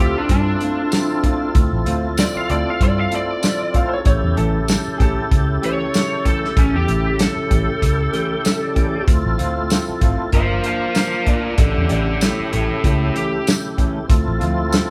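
Over a straight-eighth 96 BPM soul blues groove in D minor with a light sixteenth-note swing, a warm acoustic soul kit with tambourine, a tight kick and a pumping room sound anchors a round, foam-muted fingered bass, while a full tonewheel organ with slow rotary speaker, chorus vibrato and a touch of overdrive adds a fill at 7.8 s; clean, dark electric-guitar stabs sit in the background, a woody upright piano adds a brilliant second line from 3.8 s to 5.5 s, and an overdriven, picked lead guitar carries the brooding, mournful melody up front, all played live in one room with a moderate large-studio reverb in this cut from a longer piece.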